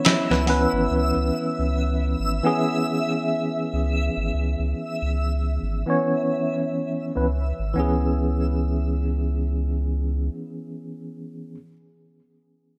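A swung sixteenth-note groove in 4/4 opens this hypnotic, cinematic trip hop fragment, with a gritty, compressed sampler-style drum kit putting up-front hi-hat and snare in a small room with gated reverb for only the first 0.7 seconds. A bright, clean tine electric piano carries the C#m7 accompaniment through tremolo, low-pass filtering and tape echo, while a round sine sub bass enters at 0.3 seconds, both parts passing through filter sweeps until 7.8 seconds. A mellow, fingerpicked Celtic harp rings softly in the background with 12-bit sampler grit, and a reversed, detuned, granular texture drifts dreamily above on a sustained high note, all set in a plate reverb with bright 1980s-style digital production.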